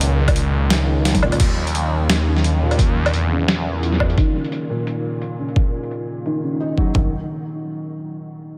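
A dreamy mix soaked in the long tail of a cathedral reverb frames this spacious, heavy cut from a longer half-time drum and bass piece at 173 BPM in 4/4, with a light swing on the 16ths. A soft, felt-muted upright piano plays intimate, boxy arpeggios through an ensemble chorus and tape echo, moving from Dbsus2 to Eb5 at 1.4 seconds, after an opening drop and a short drum fill. Underneath, a thick, swirling detuned saw bass with a fast attack and saturated sustain runs through a phaser up front until 4.2 seconds. Two gritty, pitched-down boom bap sampler-style kits carry the rhythm, both compressed and overdriven. One brings a medium-tuned snare, hi-hat, crash, toms and woodblock under low-pass filtering and a filter sweep, while the other adds a thumpy kick and more toms from 0.3 seconds.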